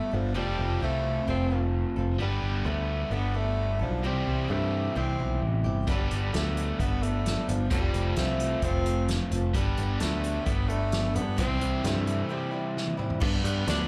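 A straight 4/4 pulse at 131 BPM drives this hopeful, jangly stretch of folk and heartland rock in G mixolydian, cut from a longer piece and heard as a live gig through the venue's PA with club reverb, cycling through Fadd9, Gadd9 and C. A breathy, whispered tenor saxophone carries the melody with light vibrato and a soft attack, while a bright, double-tracked overdriven electric guitar plays a riff. A woody, boxy acoustic archtop guitar with old strings sits in the background, and these three parts carry slapback echo, with analog delay on the sax as well. A round picked electric bass holds the bottom up front, and an unplugged drum kit played with bundle sticks enters at 5.9 seconds with a fat snare and punchy kick, closing a short break with a fill at 12.8 seconds.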